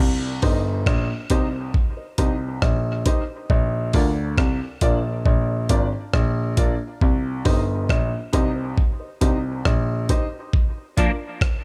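A dark, mellow grand piano opens this heavy, hypnotic dub reggae excerpt at once, holding down the bass line up front in C minor at 68 BPM in a straight 4/4. Moments later, at 0.4 seconds, a gritty, compressed breakbeat sampler-style drum kit comes in with a thumpy kick, hi-hat and rim click, sitting close in the mix. An upright piano adds woody, short-sustain stabs in a higher register, each one trailing off into dub echo. The harmony moves slowly between Cm and Bb, and a digital ambience surrounds the parts. Near the close, at 11.0 seconds, a clean, fingered semi-hollow electric guitar makes a fleeting entrance, its hollow-body tone colored by ensemble chorus and dub echo, shortly before the cut ends.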